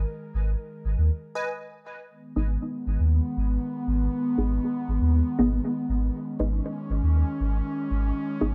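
Lightly reverberant and cavernous, this hypnotic dub techno excerpt puts a deep, clean sine sub bass up front beneath muted, mellow chord stabs drenched in phaser and dub echo, while an airy, breathy pad with a warbling chorus sustains chords throughout, a crisp digital wavetable stab with its own dub echo flickers briefly at 1.4 s during a break, and a filter sweep runs over the synth stab from 2.1 s.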